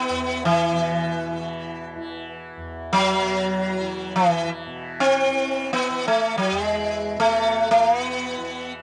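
Hindustani classical music in free time, devotional and radiant, heard in a short fragment cut from a longer piece. The sitar carries the melody up front with a bright, buzzing, plectrum-plucked tone and the shimmer of sympathetic strings, while the tanpura sits far beneath it as a softly plucked drone with a warm, buzzing shimmer and a cassette-tape character. Light reverb and small-room ambience give the home cassette recording an intimate, close feel.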